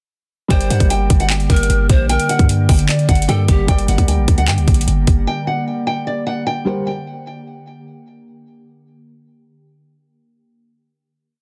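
A melancholic, dark trap hip hop piece in half-time, built as a single short hook that opens at 0.5 seconds over a G minor chord. Up front, the trap drum kit hits with a hard-clipped kick, metallic hi-hats in sixteenth notes with fast rolls, and handclaps, all carrying a tape-like warmth, while a deep, boomy 808-style bass holds long sine-based sub notes with a noise layer and pitch slides that follow the kick. Over this, a fingerpicked nylon-string guitar loops a small melody, softened by a low-pass filter and trailed by delay, and a felt-muted upright piano sits beneath it with thick, intimate held chords in a spread voicing, also filtered. A bamboo pan flute adds a sparse, airy counter-melody with vibrato and a breathy chiff, echoed by delay until it stops at 3.7 seconds. From 1.0 seconds a glassy, ethereal FM pad fades in with slow-attack sustained chords, thickened by ensemble chorus and its own reverb, lingering with the guitar and piano after the drums and bass drop out around 5.2 seconds. 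The looped, sample-like parts sit in a small room ambience, and the mix is dense and heavily limited.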